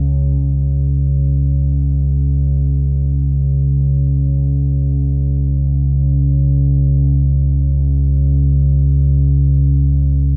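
Dark ambient drone in free time, this ominous, vast passage cut from a longer piece features a single deep, rumbling drone playing solo from 0.0 to 10.4 seconds, its nasal, detuned sawtooth-and-triangle tone entering on a slow attack and holding sustained with a long release, sitting up front in an echo-heavy mix with light room reverb and its own built-in reverb.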